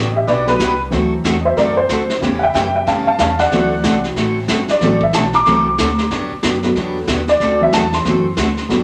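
A picked steel-string acoustic guitar and a pizzicato upright bass open this cheerful, swinging western swing excerpt at a brisk 185 BPM, with the honky-tonk upright piano joining at 0.1 seconds and a vintage brush drum kit at 0.3 seconds. The piano takes the solo throughout and sits up front: detuned, jangly and woody, with a natural, old-time character. Beneath it, the bass has a thumpy gut-string tone, while the guitar sounds bright and parlour-sized, with fresh strings and audible finger squeak. The drums sit distant in a small room, with brushes on the snare alongside hi-hat and a punchy kick, all softened by a rolled-off top. A wet club ambience surrounds the band as the harmony moves through Gmaj7, D7 and A7 in a swung 4/4.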